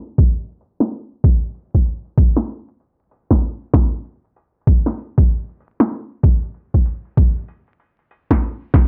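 A gritty, thumpy electronic kick drives this funky, swaggering glitch hop excerpt. Sampler-style, pitched down, compressed and overdriven, it sits up front and carries the bloom of a large room from 0.2 seconds to the end at 8.9 seconds. Alongside it, a layered electronic drum kit supplies a cracking snare and metallic hi-hats with a tape-warm character, each dulled by a low-pass filter and coloured by a small room. The groove moves at 96 BPM in 4/4 with a 62% swing on the 16ths, giving the beat a loose, strutting bounce. The whole mix is dry, dusted with vinyl crackle and a low-pass filter, while a filter sweep runs across the entire clip.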